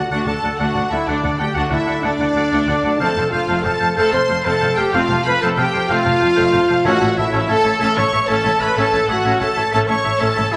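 Soaring and heroic, this cinematic adventure-score fragment in 12/8 at 125 BPM (dotted quarters) in A mixolydian sets a lush studio violin melody over a distant symphonic violin line, clear oboe and clarinet, an airy, very quiet flute group, mellow French horn chords, punchy dark trumpet stabs, ringing harp arpeggios, viola accompaniment, and a warm cello and woody double bass foundation, moving through D, F and A chords, with a soft, round timpani note at 6.8 seconds, all bathed in a wet scoring-stage reverb.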